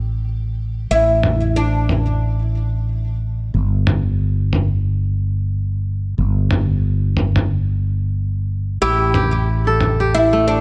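Organic downtempo with a mystical, hypnotic pull, cut from a longer piece and set in light digital reverb. A dark, round fretless electric bass with tube saturation runs throughout beneath gritty, sampler-style electronic toms that enter at 1.2 seconds, low-pass filtered and tape-tinged. A bright, woody, plectrum-plucked oud with digital delay opens the excerpt, drops away, and returns at 8.8 seconds alongside crisp, ringing, fingerpicked kora arpeggios that also carry digital delay.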